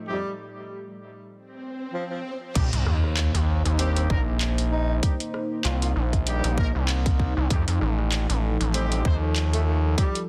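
A moody, detuned analog pad with chorus, vintage 12-bit sampler grit and sidechain pumping opens this funky, playful glitch hop excerpt, joined by a mellow, distant tenor saxophone melody with delay and tight, close-miked jazz horn stabs under a filter sweep, before a swell rises into a sub drop at 2.6 seconds, where a gritty, saturated synth bass, an up-front electronic kick and a layered kit of metallic hi-hats, handclaps, rim clicks and crash arrive in a dense, heavily limited, dry mix.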